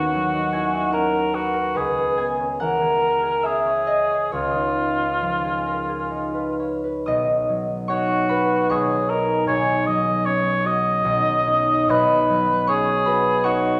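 In a rubato 3/4 that drifts between 58 and 81 BPM, this short stretch cut from a longer impressionist classical duo unfolds in B major with a luminous, pastoral mood. The cor anglais carries the melody from E#4 to D#5 in a solo classical style, its mellow tone shaded with vibrato and a distant, roomy quality even as it sits up front. The concert harp supplies fingerpicked accompaniment across a span from B1 to D#6, its acoustic strings ringing clearly beside the reed. The harmony moves through D#m7, C#m7 and C#9 before a new section at 7.1 seconds settles onto B6 and, at 11.9 seconds, Badd9. A wet recital-hall reverb, like that of a church or concert hall, gives both instruments a gentle halo that lingers around each phrase.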